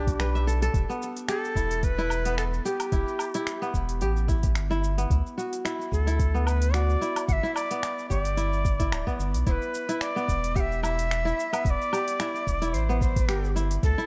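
A bright cedar flute and a ringing kora open this meditative, hypnotic organic downtempo excerpt together, with a round analog bass entering at the same moment. The flute carries the melody in an airy, woody voice, with vibrato, a chiff on each crisp attack and lifted highs that trail into digital delay. Beneath it the fingerpicked kora plays arpeggios through its own digital delay, while the deep, wave-folded bass sits up front with a fast attack and a sustained, dark body. A soft electronic kick, re-recorded in a small room, arrives at 0.1 s alongside an organic electronic kit of finger snaps, smooth hi-hat, shaker and woodblock, played with a light sixteenth-note swing. The chords drift from Em through Emadd11 and D to Em7 and C6/E, and light reverb and a warm, dark production frame the piece until it is cut off at 14.1 s.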